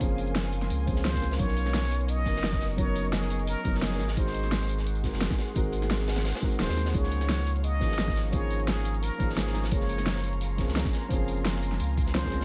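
A dry mix carries this lush, dreamy liquid drum and bass excerpt at 173 BPM in Db major, where a deep, thick saturated sub bass sits up front beneath a dark, boxy grand piano with delay and a glassy FM pad drifting ethereally in the background with chorus and its own reverb, while a knocking overdriven electronic kick, a fat-snared pop kit and a gritty, rolled-off breakbeat kit stack into the groove, and from 1.1 seconds a breathy, whispered plunger-muted trumpet with wah-wah and vibrato sings an intimate jazz-style solo roughened by 12-bit sampler grit and digital delay over chords moving from Gbmaj9#11 through Cbmaj9, Ab7 and Db6.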